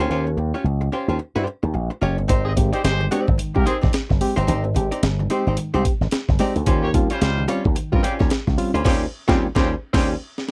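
This dry, close recording has a 1970s studio character with little reverb, and it is cut from a longer funk piece with a playful, gritty mood and a swung sixteenth-note feel. A dark, clean hollow-body archtop guitar plays compressed, picked accompaniment from the start, alongside an up-front slap bass whose envelope filter gives it a bright, punchy edge. At 2.3 seconds a sampler-style breakbeat kit comes in, pitched up and compressed, with a thumpy kick, a high-tuned snare, hi-hat and crash that were re-recorded in a large room. At the same moment a barky, reedy electric piano begins adding stabs through its built-in speakers, lightly overdriven and carrying a fast tremolo. A tight, vintage horn section follows just after as a clear, pop-styled second line, while the harmony moves from Eb13 to Abmaj7 and back. The band hits an accent at 8.9 seconds before a drum fill closes out the passage.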